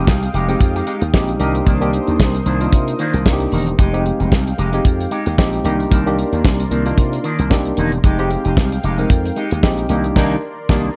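Early-eighties boogie funk at 113 BPM with a swung sixteenth-note feel in F dorian, this funky, danceable excerpt alternates Fm9 and Cm9 as a growly, punchy slap bass with an envelope filter sits up front beside a damped 70s drum kit with a fat snare and tight kick, while a bright, twangy envelope-filtered electric guitar picks a riff through lush chorus, a worn, slightly out-of-tune tine electric piano supplies accompaniment, and a smooth, detuned sawtooth analog pad holds sustained chords in the background, all in a dark, small-room production that closes with a band accent at 10.2 seconds.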